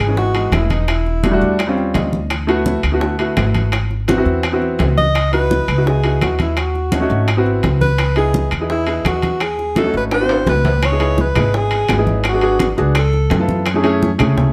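Driving and sultry, this Afro-Cuban jazz excerpt moves in a straight 4/4 over harmony rich in extended and altered chords. A breathy alto saxophone carries the melody up front with vibrato, subtone and scooped notes, stating a brief phrase before the upright piano takes a short fill at 1.6 seconds, then returning at 5.0 seconds for a longer solo line. Beside it, a woody pizzicato upright bass on steel strings and a warm upright piano with short sustain sit forward in the mix, the piano accompanying through rootless and altered voicings. Behind them, low-tuned congas with a thick skin, round bongos and close, dry claves stay in the background, while ringing metal-shell timbales add a vintage, band-limited edge. A drum fill at 10.1 seconds leads into a new section, all heard in a moderate studio reverb.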